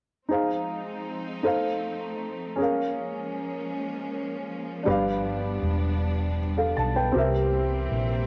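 A cassette home recording with moderate spring reverb carries this solemn, soulful gospel excerpt in F minor, moving slowly at 53 BPM in 6/8. A woody, slightly detuned upright piano sits up front, accompanying over Fm7, F7 and Bbm7/F, while a clear, focused studio string section sustains bowed chords with vibrato further back. At 4.9 s a dark, round hollow-body electric bass enters close in the mix as the harmony moves through G7 to C7.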